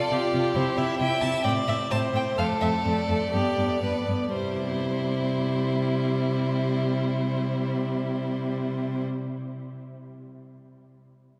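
Bathed in a long, wet cathedral reverb, this brief cut from a quick, cheerful and spirited classical-period string quartet movement sounds as if played in a church or concert hall. It unfolds with a rubato feel that slows through the first 4.3 seconds. A rich, focused first violin carries the melody with vibrato over a smooth, even second violin line and a clear, focused viola accompaniment, while a close, up-front cello anchors the bass.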